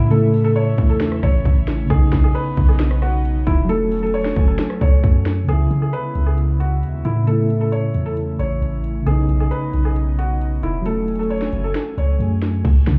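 A trap drum kit with a hard-clipped kick, sharp snare and metallic hats sits up front beside a deep, boomy 808-style bass in this brooding, dark half-time hip hop piece at 134 BPM, while a felt-muted upright piano carries a mellow, intimate melody with audible action noise and delay over soft, round electric-piano-like synth keys with chorus and tremolo and a breathy, airy pad in the background, the whole mix heard muffled as if through a wall with club reverb as the chords move through A, Badd9, F#madd9 and C#m7.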